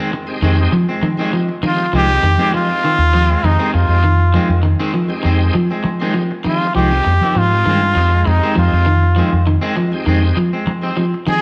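Twangy, slightly broken-up electric guitar stabs with spring reverb open this defiant, hypnotic afrobeat excerpt, joined at once by a second fingered guitar playing arpeggios, a bright, shouting tonewheel organ with key click, chorus vibrato and slow rotary speaker, and a dark, round fingered electric bass up front. At 1.7 seconds a trombone with straight mute takes the solo melody, its nasal, brilliant tone colored by vibrato and scooped notes. The whole groove sits on a single minor-seventh chord within a moderate large studio reverb.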